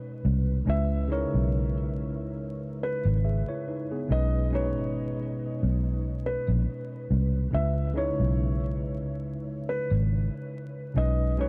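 Reflective and melancholic, this lo-fi hip hop excerpt sways with a gentle swing as a worn, slightly out-of-tune tine electric piano opens the piece, softened by cassette tape coloring and a low-pass filter, while a dark, round, foam-muted fingered electric bass joins at 0.2 seconds with a punchy, up-front presence. At 0.7 seconds a felt-muted upright piano carries the melody in a soft, intimate voice with audible action noise, filtered and trailed by a diffuse ambient delay. The harmony alternates between B6 and C#m7 under light studio reverb and a layer of vinyl crackle.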